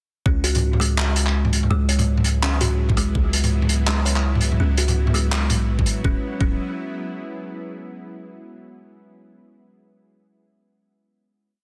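A half-time drum and bass groove at 166 BPM in 4/4 opens at 0.3 seconds, with a knocking electronic kick and a sparse breakbeat kit of clap, low tom and closed hat, swung on the 16ths. The kit sounds dark, gritty and saturated with a rolled-off top, set up front in a small room, and its snare carries soft clipping. Beneath it, a deep, sine-like 808-style bass holds long gliding notes, while a woody, thumbnail-plucked kalimba repeats a 12-step arpeggio loop that drifts against the bar, trailed by dub echo. A tense, string-like drone with vibrato and built-in reverb enters at 1.6 seconds with slowly shifting chords, pumping under sidechain. The piece is a short, spacious and cinematic drop in C# minor that settles on a final chord from 6.0 seconds, with the drone sustaining to the end in a dense, heavily limited modern mix.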